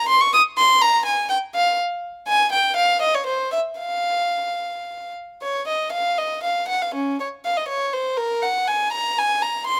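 A lone violin carries this grave, flowing baroque-style suite movement, its gut-string tone airy and slightly nasal in a period style. The single player's bowed line sits close and up front, ranging from Db4 to Eb6. The piece moves in 3/4 at roughly 108-126 BPM with a rubato feel, tuned to A4 = 441 Hz. It opens in F minor and shifts to Bb minor at 5.4 s, where the opening material returns, running until 9.8 s. Close, detailed microphones and light reverb capture this short fragment cut from a longer piece.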